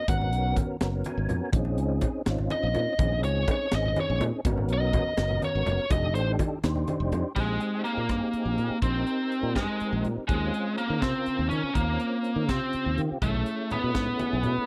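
Electric jazz fusion in 6/8 at 82 BPM, counted in dotted quarters with a straight feel, this driving, intense passage is cut from a longer piece and settles into Bb minor from 7.4 seconds. A biting, overdriven lead guitar carries the melody up front, taking a solo through the first 7.4 seconds over lush extended chords such as Abm11, Bbm11 and F13. A mellow, round tonewheel organ accompanies through a slow rotary speaker and chorus vibrato, slipping in a brief fill at 0.8 seconds. Fingered electric bass sits bright and direct alongside a crisp, polished drum kit with a high-tuned snare, punchy kick, hi-hat, rim click and crash cymbal. Low-tuned congas played with soft hands add a thin-skinned layer, dropping out at 7.3 seconds as the harmony shifts to suspended thirteenth chords and returning at 13.2 seconds. The sound is dry and close, in the manner of a 1970s studio recording.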